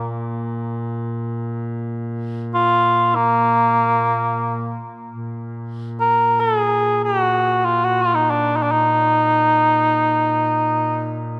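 A moderate cathedral reverb with a 4.0-second decay surrounds this solemn, longing Caucasian folk lament in free time, tuned to A4 = 438 Hz. Up front, a mellow cor anglais carries the melody between Bb3 and Bb4 in a classical style with light vibrato until 11.2 seconds. Beneath it, a warm, distant and roomy duduk holds a Bb2 drone with soft attacks and scooped notes, while the short passage, cut from a longer piece, returns to its opening section at 5.1 seconds.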